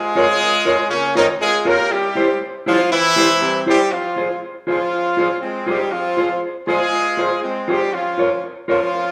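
Mischievous and driving, this short ska excerpt in F minor moves at 120 BPM with a light swing, as a punchy, up-front horn section with light vibrato and octave doubling carries the melody over a dark, clean, fingered electric guitar soaked in tape echo, all set in a wet large-room reverb that gives the live band a lively, spacious feel.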